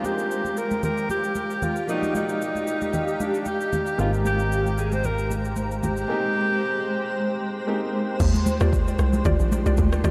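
This amapiano excerpt moves at 114 BPM in Eb major with a soulful, warm mood, a 16th-note swing and a dreamy mix soaked in huge reverb. A breathy, whispered alto saxophone carries the melody up front with vibrato and delay. Beneath it sit a clear, vintage grand piano in the background and a cloudy, evolving granular pad holding sustained chords that pump with sidechain. An electronic afro-pop kit with a deep kick, rim click, shaker and crash runs alongside ringing, high-tuned congas played with soft hands. At 4.0 seconds a punchy, funky sawtooth bass enters briefly as the harmony shifts from Ebmaj9 to Abmaj9. The drop lands at 8.2 seconds, where a hollow, bouncy log drum bass takes over up front and a woody, round synth pluck soon adds mellow stabs with chorus and delay.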